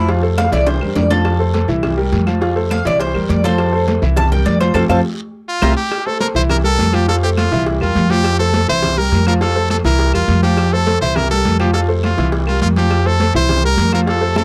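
Joyful and sunny, this salsa excerpt opens with a metallic, picked Cuban tres solo up front over a polished grand piano, a dark, thumpy pizzicato upright bass, soft-handed congas, distant cowbell and bongos, a raspy guiro and woody claves, with a band accent from 4.7 seconds before a brilliant, punchy trumpet with vibrato takes over the melody at 5.5 seconds in a dry, close studio sound.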